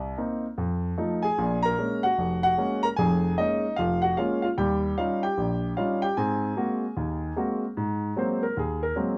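Relaxed and warm in mood, this short cut from a longer piece is a solo jazz performance for grand piano at 150 BPM in 4/4, with a swung eighth-note feel. The piano stands alone, its tone natural and placed up front, reaching from a deep F1 in the bass to Bb5 in the upper register. The harmony moves from Cm7 and F7 into Bbm7, then settles on Eb9 and Ab9 as the passage unfolds. At 7.8 seconds the music turns to a new section, which the piano carries until the recording ends at 9.2 seconds. A moderate studio reverb and a dark production surround the instrument with a modest sense of room.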